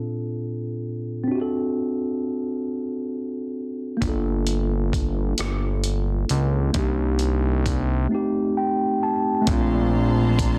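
A mellow, clean tine electric piano opens this slow, tender six-eight R&B excerpt alone, sitting up front and voicing chords from Bbmaj9 through D7 in Bb major at 44 BPM (dotted quarters), tuned to A4 = 436 Hz. At 4.0 seconds a fat, saturated analog bass with a detuned sawtooth tone and a plucky filtered attack joins over Gm9, alongside a gritty, compressed sampler-style drum kit of hi-hat, rim click and a thumpy kick, re-recorded in a large room yet kept close. The harmony moves through Cm9 and Am7b5, and the electric piano plays a fill at 8.1 seconds. At 9.5 seconds the music returns to Bbmaj9 as a lush, woody string section enters quietly with bowed, vibrato-rich sustained chords. The mix is dry, with a dense, heavily limited modern master.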